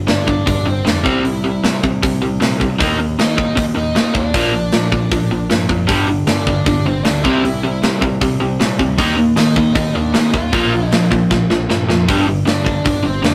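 A rough rehearsal-room sound with moderate ambience frames this urgent, angry punk rock excerpt in G minor at 155 BPM, where a compressed, overdriven rhythm guitar drives the riff up front over a tight metal drum kit with a tight kick and medium-tuned snare, a growly, bright picked bass sits in the background, a dark, smooth overdriven lead guitar carries the melody, a second shadowy overdriven guitar joins the riff at 5.9 s, and a drum fill at 11.3 s leads back to G5 as the chords cycle through G5, C, Eb5 and Bb.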